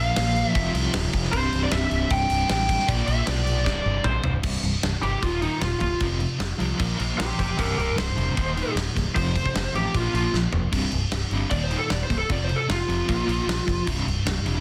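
A dense, heavily limited modern master with light reverb frames this powerful, anthemic hard rock excerpt, cut from a longer piece and built on chords moving through Bb5, F5, C and Eb5. A crunchy, double-tracked overdriven guitar plays the riff with tremolo over a bright, growly picked electric bass, while a big-room acoustic drum kit sits up front with a tight kick, medium-tuned snare and a rolled-off top, its kick and snare softly clipped, and it plays fills at 3.7 s and 10.3 s. A dark, lo-fi lead guitar through a small cranked amp, overdriven and fed through digital delay, carries the melody before breaking into a solo at 4.4 s.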